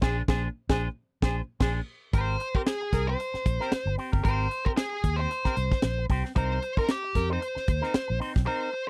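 A dry, close 1970s-style studio sound frames this driving, sly funk cut from a longer piece, where a tight drum kit with a high-tuned snare sits up front beside a round, punchy fingered bass, a twangy envelope-filtered guitar picks clean accompaniment, a breathy tenor saxophone whispers an intimate second line with vibrato, and from 2.1 seconds a nasal, overdriven lead guitar with a parked wah carries the melody over chords moving from Bb9 to Abmaj9 and Cm7.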